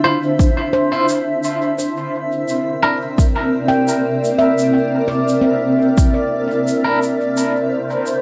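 Echo-heavy with its highs rolled off and a light reverb, this hazy, spacious ambient dub excerpt at 86 BPM drifts from Dm9 to C9 and D7sus2 as a cloudy, detuned granular pad sustains up front, a ringing nitrided-steel handpan spins dub-echoed arpeggios, twangy clean electric guitar stabs shimmer with tremolo and echo, an overdriven deep electronic kick thumps from 0.4 to 6.1 seconds beneath a faint brushed shaker, and a breathy, wind-like tuned noise texture breathes in at 7.7 seconds.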